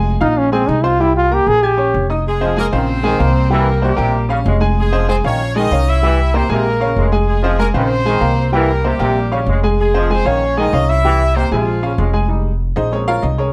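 Over a straight, driving Latin groove in 4/4, a woody, thumpy pizzicato upright bass and a clear upright piano with short sustain play together throughout this danceable excerpt from a longer piece. A bright, punchy solo trombone with light vibrato opens the melody, and at 2.3 seconds a tight horn section doubled in octaves takes over while a vintage-toned trombone section adds a second line beneath it, cycling through Fm7, Bbm7 and C7. At 12.3 seconds the piano takes a solo over the bass, all within a dark production with light reverb.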